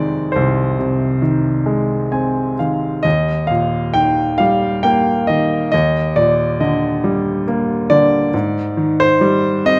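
In an unhurried 3/4 at 68 BPM, this brief excerpt from a longer classical piece moves with a supple rubato feel, its phrases stretching and settling at will. A lone baby grand piano carries the whole lyrical solo in Eb major, ranging from C2 up to Ab5, and its tone is clear, intimate and natural, placed up front with the sound of its action audible beneath the notes. Between 1.7 and 3.1 seconds a short fill ornaments the line before the harmony shifts. The chords drift from Fm7 to Ebadd9 at 3.1 seconds, then through Ebmaj7 to Abmaj7, giving the passage a calm, tender glow. A moderate recital hall reverb surrounds the instrument with a gentle sense of space.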